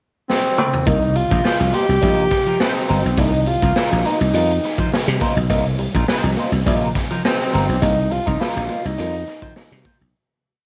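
A lo-fi home cassette recording with light reverb and a dull, capped top end carries this sly, funky piece in C minor at 104 BPM, opening as a gritty, saturated garage drum kit plays a fill at 0.3 seconds while a breathy, whispered tenor saxophone begins its motif-based call phrases in a mellow jazz style with light vibrato. At 0.9 seconds the band settles on Cm7: a growly, foam-muted thumbed slap bass sits up front with a syncopated riff anchored on the downbeat, full of muted ghost notes and chromatic approach notes, against the drums' tight sixteenth-note groove with a punchy kick. A twangy guitar at the edge of break-up scratches out sixteenth-note rhythm through a wah with a warbly pitch drift, a very quiet clean guitar picks a muted single-note line, and the whole piece fades out from 7.8 seconds.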